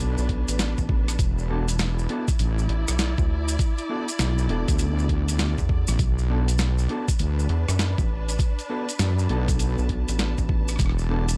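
Dry, gritty and cassette-tinged, this swaggering, funky glitch hop excerpt struts at 100 BPM with a 16th-note swing in B minor pentatonic. A thumpy electronic kick sits up front beside a boom bap sampler-style kit of hi-hat, rim click and medium-tuned snare, both overdriven and re-recorded in a small room, joining at 0.3 s. Underneath, a heavy, saturated wobble bass with chorus pairs with a rubbery, hollow square bass that plucks in at 0.2 s. Grainy maracas and dark, clean stabs of mellow electric guitar, pumping and trailed by analog delay, ride over a warm studio string section with vibrato and portamento that also pumps, all over a Bm7 to E7sus4 progression.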